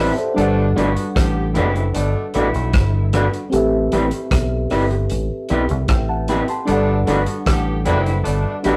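A soft, round FM electric piano fill with chorus opens this smooth, romantic lovers rock reggae excerpt alongside a dark, punchy fingered dub bass and slightly broken-up, twangy guitar stabs moving between Gmaj9 and Am9, joined by a damped 70s drum kit with a tight kick, hi-hat and rim click at 0.2 seconds and a vintage saxophone section with vibrato carrying a second line from 0.4 seconds, in a rough rehearsal-room recording with saturation and moderate studio reverb.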